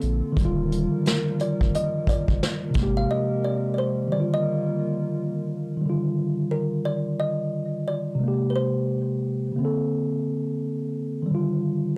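A dry, gritty hardware recording with light reverb frames this cosy, mellow lo-fi hip hop fragment, swung on the sixteenths and cut from a longer piece. A clean tine electric piano with cassette-tape colour carries the Ebmaj9, Abmaj9 and Bbmaj9 chords up front throughout, while a hollow, flute-like pad with chorus glows in the background until 5.8 seconds, and a round, deep sub bass with tube saturation and a punchy brushed drum kit with a rolled-off top both fall away within the first few seconds. From 1.1 seconds a woody, airy kalimba plucks a short-noted melody up front.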